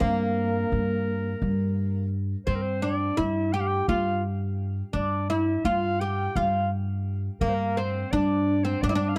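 Melancholic and hypnotic, this dry, close 1970s-style Turkish makam ensemble excerpt in G makam huseyni moves in a straight 7/8 at 170 BPM counted in eighths, with a woody, double-strung, plectrum-plucked fretless oud carrying the melody up front, a bright, smooth-topped clarinet tracing a classical-style second line further back through tape echo, and a dark, thumpy pizzicato upright bass on gut strings holding G2 up front across all 9.2 seconds.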